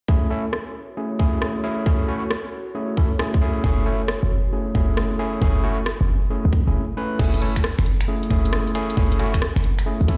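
UK garage two-step at 135 BPM in F# minor, moody and skippy with swung sixteenths, where barky, gritty overdriven electric piano stabs through a combo amp sit up front with low-pass filtering and delay over a tight, layered electronic kick and a garage kit of finger snaps, rim clicks, warm filtered hi-hats and crash. A warbling, nostalgic lo-fi pad with chorus and pumping hangs in the background until a short break at 6.8 seconds, while a punchy, sine-based 808 bass with tube saturation enters at 3.6 seconds, all in a stone-room reverb that sounds like a big system in a bare room.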